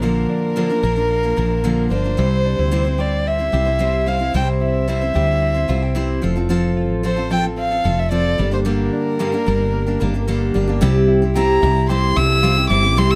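Carefree and sunny, this 13.2-second excerpt of acoustic pop in C mixolydian moves at 111 BPM in a straight 4/4, with a dark, intimate violin carrying the melody up front with light vibrato and a soft sul tasto tone over a full-bodied picked steel-string acoustic guitar, a clean, compressed electric guitar tracing arpeggios in the background, and a round, punchy fretless electric bass, all captured by close, detailed microphones with little reverb as the chords pass from Bb through C, F and Gm before returning to C at 10.8 seconds.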